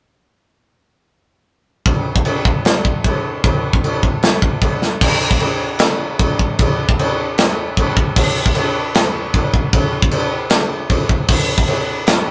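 A straight 4/4 metal beat at 153 BPM drives this aggressive, heavy excerpt cut from a longer piece, where an up-front acoustic studio drum kit, with a tight kick, medium-tuned snare, crash and china cymbals, enters at 1.9 seconds, breaks into a fill at 4.8 seconds to open a new section, and plays until 12.2 seconds in a small, rough rehearsal-room sound with moderate reverb.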